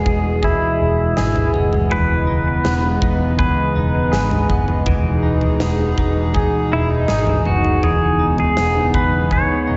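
A dreamy, reverb-soaked mix with a softened top carries this blissful dream pop excerpt at 81 BPM in E major, where an up-front pedal steel guitar with fingerpicks, slide and volume swells sings the twangy, delayed melody over a hollow, flute-like pad holding sustained chorused chords, a clean electric guitar picking lushly chorused, delayed arpeggios, a round, foam-muted vintage bass entering at 0.1 seconds, and a huge arena drum kit with punchy kick and pumping room sound, all moving between Emaj7 and C#m9/E.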